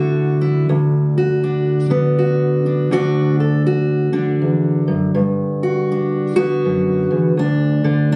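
Hopeful and warm, this short folk excerpt from a longer piece features a solo fingerpicked steel-string dreadnought acoustic guitar, placed up front and moving at 81 BPM in a swung 3/4 through Dadd9, Bm/D, D and Gmaj7 before stopping at 8.2 seconds, its tone caught on a phone in the room with a light club reverb.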